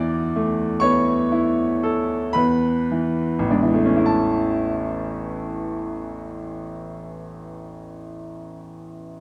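Dreamy and nostalgic, this short passage from a romantic classical nocturne for solo piano drifts in 9/8 with a free, rubato feel. The grand piano sits up front with a brilliant, smooth, vintage tone and long sustain, ranging from deep bass notes up into the high treble. The opening phrase slows gradually over its first 4.1 seconds, hanging on a suspended dominant chord that settles into a plain dominant seventh around 2.4 seconds. It then resolves to the home chord as a new phrase begins, and the piano rings on until 9.2 seconds. A moderate scoring stage reverb surrounds the instrument, and the overall production leans dark and warm.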